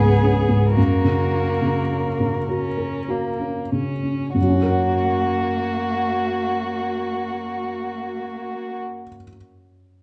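This lyrical passage from a slow romantic movement for piano quartet opens with all four players together: a muted violin sings the melody over a second muted violin and a muted cello, while a baby grand piano carries the accompaniment. The tempo is very slow, around 31 to 39 dotted-quarter beats per minute in 6/8 in F# major, with a rubato feel that slows further over the first 4.4 seconds. The bowed strings are veiled by their mutes and shaded with vibrato; the cello sits close, one violin sounds distant, and the piano is the loudest voice, mellow, intimate and up front, with audible action noise and a short sustain. The harmony moves from C#5 to F#, and a contrasting second section begins at 4.4 seconds. The strings stop at 8.8 seconds, leaving the piano to finish alone by 10.0 seconds, all set in a reverberant recital hall with a dark, warm production.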